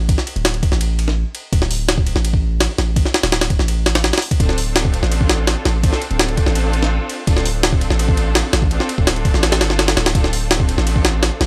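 Raw and frenetic, this drum and bass excerpt in the jungle style drives along at 167 BPM in 4/4 with a straight feel, sitting in D minor on a single Dm7 chord. A long, deep 808-style bass with a sine-like tone and tube saturation anchors the low end from the start, its fast attack decaying into the floor, while a compressed, pitched-up sampler drum kit enters at 0.1 seconds with a thumpy kick, high-tuned snare, hi-hat and ride cymbal. Both the bass and drums sit up front, the kit carrying a tape-warm grit that suits the style. At 4.4 seconds a rich studio string section comes in with soft-attack bowed chords, expressive ensemble vibrato and a vintage 12-bit sampler grain, lying quieter beneath the rhythm. The overall sound is dry and gritty, framed by a digital ambience that keeps the hardware-recorded edge intact.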